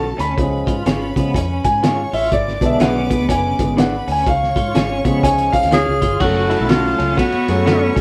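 A stone-room reverb wraps this live-sounding excerpt of driving, urgent uptempo 1960s-style soul at 123 BPM in F# harmonic minor, where an up-front concert grand piano with deep bass carries the accompaniment over a round, punchy muted electric bass and a cloth-damped, gritty drum kit with a fat snare and dark cymbals, a hollow-body guitar plays a clean tremolo riff while a slightly broken-up guitar adds stabs in the background, a clear bowed violin section traces a second line, and a breathy, intimate tenor saxophone with scooped notes enters on the melody at 5.7 seconds, just before the chords move to F# minor.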